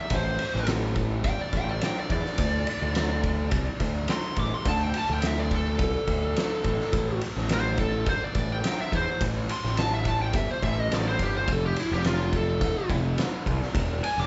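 A lead guitar through a small cranked amp carries the melody from the first moment, its overdriven, picked tone running a solo that spans E4 to D6 across the whole 14.3 seconds of this brooding clip. It sits in a gritty blues rock power trio setting with a southern rock edge, moving at 106 BPM in a straight 4/4 feel in A minor. Beneath it, a picked electric bass pushes a dark, round fuzz tone that sounds direct and amped, punchy and up front between E1 and E2. An oversized, low-tuned acoustic kit of kick, snare and ride brings a fat snare, a punchy kick and dark cymbals, saturated and pumping in a bright stone room. The harmony moves from Am to D5, A5 and F before landing on E5 near the end. The trio sounds like a band playing live together in one room, with light reverb and a muffled top end that keeps the whole picture heavy and close.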